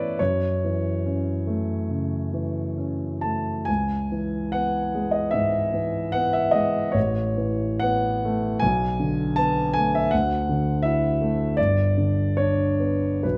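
A warm concert grand piano stands up front in this brief fragment of a longer impressionist classical work, playing alone from 0.0 to 13.4 seconds. The mood is wistful and mysterious, and the playing moves with a free, rubato feel over a 4/4 metre. The instrument's tone is open, with a deep bass and a long sustain that lets the harmonies ring and blend, ranging from G1 up to A5. The harmony drifts through F#m7, C#m7, A69, Bm7 and Dadd9 before settling on G at 11.6 seconds. Close, detailed microphones capture the piano in a moderate recital hall reverb that adds gentle space around each chord.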